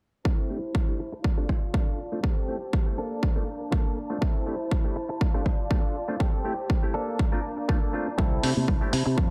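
A twangy, clean electric guitar riff opens this funky, sunny filtered disco house excerpt at 121 BPM in C mixolydian, joined almost at once by a rich, vibrato-laden violin section holding sustained chords and a punchy, overdriven kick drum up front. A nasal clav with phaser adds accompaniment as the chords cycle through C6, F6, Am7 and Bbmaj7, with the melodic parts pumping against the kick under a filter sweep and light digital ambience. Around 8.2 seconds a growly fingered bass arrives with background tambourine and congas, and a gritty hi-hat slips in briefly at 8.4 seconds.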